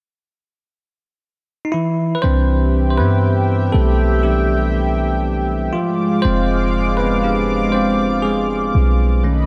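A bell-like tine electric piano, bright and up front, opens this tender, romantic R&B excerpt at 1.6 seconds and takes a solo from 2.2 seconds, when a shimmering, retro chorused pulse-width pad with a slow attack and a deep, boomy, clean 808-style bass join, moving from Cmaj7 to Fm6 at 5.7 seconds in a dreamy mix soaked in lush hall reverb.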